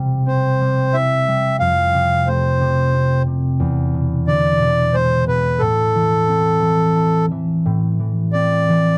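A dry, close recording with a 1970s studio intimacy opens this gentle, dreamy children's lullaby in a lilting three-time with a loose, rubato feel. A concert harp provides the accompaniment from the start, its mellow, thumb-plucked tone ringing up front across a broad span of register. At 0.3 seconds an accordion enters with the melody, its single-reed voice reedy and clear, close-miked and full in its dry tuning. The harmony drifts from C through F and E7 before settling on A minor, and the harp adds a brief fill at 6.6 seconds before the opening phrase returns at 7.6 seconds. This fragment is cut from a longer piece.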